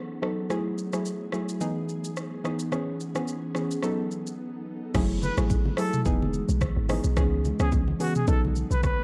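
A breathy, whispered trumpet with vibrato enters at 5.2 seconds to carry this sultry, mellow afrobeats cut, floating over a soft, round pluck with chorus and an ethereal pad of sustained chords, while an electronic afro-pop kit with a deep kick, crisp hats, rim click, shaker, toms and crash keeps the groove up front, and after a short break a dark, percussive log drum bass joins at 4.9 seconds, followed by damped, low-tuned congas at 5.0 seconds, all heard through the light reverb and hazy character of a home cassette recording.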